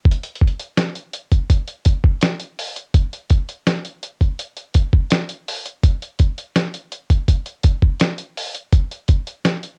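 A straight 4/4 groove at 83 BPM rides through this short R&B fragment, cut from a longer piece, with a dusty, sampler-style soul drum kit playing hi-hat, kick and snare from 0.1 to 9.8 seconds. The kit sits up front and sounds gritty and compressed, pairing a thumpy kick with a medium-tuned snare. Light reverb and the cassette home-recording character give the late-night, longing mood an intimate, lo-fi feel.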